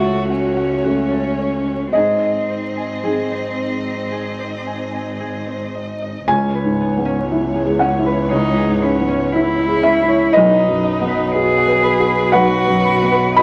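Neoclassical piano and strings in C# minor, drifting in a longing, reflective rubato around 54-60 BPM, in an excerpt cut from a longer piece. A felt-muted upright piano sits up front with a dark, intimate, thick-felt tone, beside a bowed solo cello carrying a second line with vibrato and expressive portamento, while a focused chamber string section holds sustained chords, a concert harp rings out fingerpicked arpeggios, and a close, soft-attack bowed double bass anchors the low end. The harmony moves from F#m/C# to G# before shifting at 6.3 seconds to C#m7 and then B, all set in a moderate large studio reverb with a layer of vinyl crackle.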